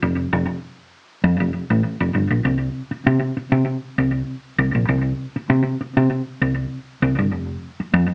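Funk in a playful, energetic mood, this short fragment of a longer piece features a hollow-body short-scale fingered electric bass playing solo from start to finish, its dark, round, amped tone sitting up front with a slapback echo. The line ranges from F1 to C3 in a straight 4/4 feel and shifts into a new section at 2.5 seconds. A wet, short club reverb and a small-speaker sound give the recording a compact, roomy character.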